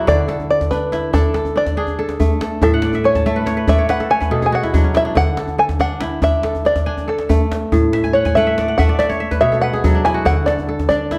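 Joyful and flowing, this short cut from a longer West African string and xylophone piece in a straight 12/8 sets a twangy, plunky open-back banjo solo carrying the melody over ringing, crisp kora arpeggios that add fills at 2.6 and 7.9 seconds, while an up-front djembe with deep tone and metal rattles joins at 0.1 seconds, all placed in a dark production with a moderate recital-hall reverb.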